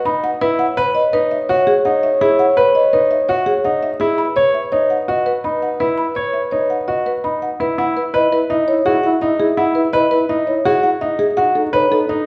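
Urgent yet meditative, this minimalist classical pattern music in 5/4 sets a woody, round marimba melody played with soft mallets over brilliant, up-front grand piano arpeggios and a soft-attack French horn second line, heard in a wet recital hall reverb with a dark production, the harmony moving into a new section at 7.8 s in this fragment cut from a longer piece.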